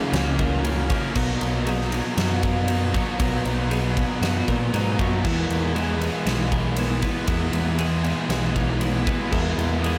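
A layered wall of guitars opens this wistful, blissful shoegaze and dream pop passage, cut from a longer rock piece in a straight 4/4. A crunchy overdriven guitar with ensemble chorus carries a riff, joined by a double-tracked, distorted guitar and a raw garage guitar whose overdrive trails into reverse reverb, both set in the background. Behind them, a clean, compressed twelve-string electric guitar plays twangy, bright arpeggios through subtle chorus and analog delay. At 0.1 seconds a growling picked bass arrives up front, direct and amped with gritty overdrive, alongside a huge arena drum kit with a punchy kick, fat snare and bright crash and ride cymbals. The harmony moves from F#7 to Bmaj7 and settles on Eadd9 at 5.2 seconds, all of it bathed in a dreamy church-like reverb that blurs the parts into a shimmering haze.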